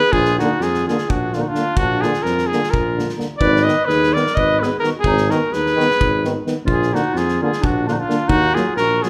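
A moderate recital-hall reverb gives this 9-second cut from a longer Balkan brass band piece an open, resonant sound. The piece is fiery yet bittersweet, driving along in 7/8 at 257 BPM counted in eighths with a straight feel. A warm, present cornet carries the melody up front, while a distant, roomy clarinet adds a second line. A mellow tuba with light vibrato anchors the bass, and a loose acoustic drum kit adds a tight kick and a medium-tuned snare in a small, pumping room. From 0.4 s, a bright trombone and a smooth-topped euphonium fill in the accompaniment from the background. The harmony moves from Bb to Abm, back to Bb, and lands on Ebm near 8.3 s.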